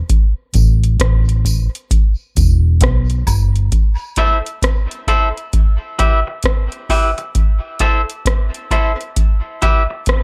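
A digital ambience frames this meditative, spacious dub reggae excerpt in A minor at 66 BPM with a 16th-note swing, where a booming, overdriven analog drum machine with deep kick, metallic hats and rim click runs throughout, a dark, foam-muted, round bass and a faint, saturated tambourine and woodblock with dub echo fill the opening break, which lasts until 3.7 seconds, and a twangy, slightly broken-up, compressed electric guitar with dub echo enters at 4.2 seconds over alternating Am and Em chords.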